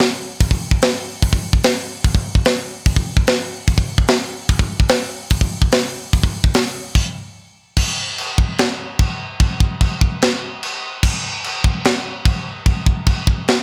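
A straight 4/4 metal groove at 147 BPM drives this dark, relentless fragment, played on a solo acoustic drum kit of kick, snare, hi-hat, crash and china cymbals. The kit breaks off in a brief stop from 7.0 to 7.8 seconds, then returns in a half-time feel through to 13.6 seconds. The sound is up front, dry and mid-forward, with a tight kick, a medium-tuned snare, a saturated, gritty edge and a rolled-off top.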